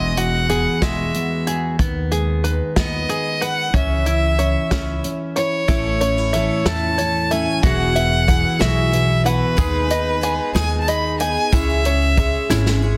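A dense, heavily limited mix with light reverb carries this uplifting, nostalgic indie folk fragment in a straight 6/8, its arrangement building as it goes. Up front, a single bowed fiddle sings the melody with a focused, smooth top and light vibrato, while a woody, dark pizzicato upright bass anchors the low end. A full-bodied fingerpicked dreadnought guitar and a twangy, plunky open-back banjo weave accompaniment and arpeggios beneath, joined by a natural country kit with a tight kick, medium-tuned snare and hi-hat. At 5.7 seconds a bright, shimmering twelve-string guitar enters, octave-doubled with audible finger squeak, as the harmony reaches A before cycling back through Eadd9, G#m/D# and C#m. The fingerpicked guitar drops out at 9.6 seconds, where a very quiet, jingly tambourine slips in close and dry, and a drum fill closes the passage.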